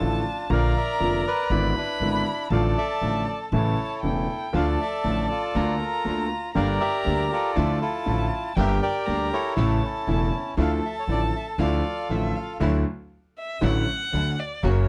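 Dark, lightly reverberant production frames this tense, melancholic tango in a rubato 4/4, where a reedy, airy bandoneon with plate reverb carries the melody up front over a brilliant concert grand piano and a woody, growly pizzicato upright bass, while a bowed solo violin adds a smooth, expressive second line with vibrato and portamento, a biting studio string section enters in the background with stabs at 4.5 s, and the violin takes a solo at 12.6 s as the bandoneon drops out.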